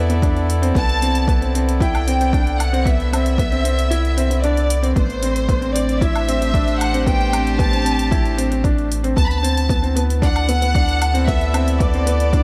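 This moving, intimate piano-and-strings electronica piece opens with a symphonic violin section singing a smooth, vibrato-rich melody in the upper register, over sustained chords from a close, reedy string quartet with a gut-string, period-style tone. A felt-muted upright piano plays a soft riff in its middle range, its short sustain and audible action noise giving it a hushed, mellow character. Underneath, a round, deep analog bass sits up front with a wave-folded edge and a pumping sidechain feel, while shimmer reverb glows around the violins, quartet and piano. An electronic hi-hat and woodblock with dark hats enter at 0.1 seconds, followed by a punchy, layered electronic kick at 0.2 seconds that drops out between 3.9 and 5.0 seconds. In A dorian at a straight 114 BPM in 4/4, the harmony moves through C, Amadd9 and D6 in this short excerpt, set in light studio ambience.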